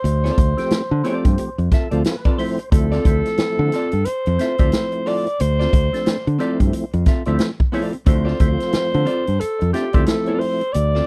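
Funk with a sly, swinging sixteenth-note feel sits on a single minor-seventh chord through this short cut from a longer piece. A breathy, whispered alto saxophone carries the intimate, vintage-toned melody through a tape echo, over a dark, clean hollow-body jazz guitar, a direct fingered electric bass and an up-front big-band drum kit with a punchy kick and a medium-tuned snare. A round, percussive tonewheel organ with chorus vibrato and a slow rotary speaker enters at 0.6 seconds with stabs and plays a fill from 1.4 to 2.7 seconds, all captured in a dry, close 1970s-style studio sound.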